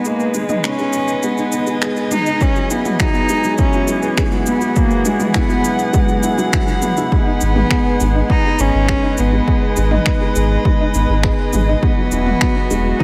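Cinematic and hypnotic, this short cut from a longer piano and strings electronica piece moves at 102 BPM in G# minor, shifting between G#m and Eadd9 chords. A single close, intimate cello carries the melody with light vibrato, a soft attack and an airy, nasal bow, while a dark upright piano plays a mellow, woody riff with long sustain and a digital delay. Beneath them, a dark string quartet holds bowed chamber chords with a smooth top, filtered and pumping to the beat. A round sine sub bass enters at 0.3 seconds, deep and up front with a fast attack, and it pumps as well. An overdriven deep house kit of finger snaps, shaker and toms plays from the start, and a punchy, overdriven electronic kick joins at 2.4 seconds, building toward the drop at 7.1 seconds. The mix sits in a small room with light reverb.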